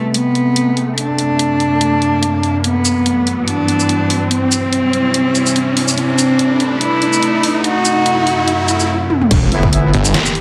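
A nasal, intimate cello carries the melody with tape echo through the build-up of this heavy, chaotic half-time wobble dubstep in E minor at 144 BPM, over an evolving, morphing wavetable pad with sidechain pumping, a rising sweep and an up-front dubstep drum kit with a deep snare, until the drop at 9.3 seconds lands with an impact, a detuned square-wave wobble bass, a punchy electronic kick in the background, distant mellow brass stabs and a snarling, growling distorted saw bass, set in a wet digital room.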